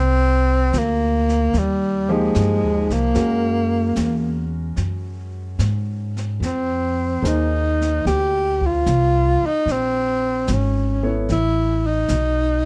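Intimate and wistful, this short jazz ballad excerpt moves at 74 BPM in 4/4 with a gentle swing on the eighth notes. A breathy tenor saxophone carries the melody up front, its dark, whispered subtone tone marked by vibrato, soft attacks and scooped notes, while a woody, growly pizzicato upright bass sits close beneath it. Brushes on the drum kit come in at 0.7 seconds, with a high-tuned snare, hi-hat and a boomy kick kept low in the mix. A clear concert grand piano adds accompaniment from 2.1 to 11.3 seconds, its deep bass rounding out the harmony. The chords drift from Cm11 through Gb9, Fm7 and Bbm9 before settling on Asus2, all wrapped in light reverb and a dark, warm production.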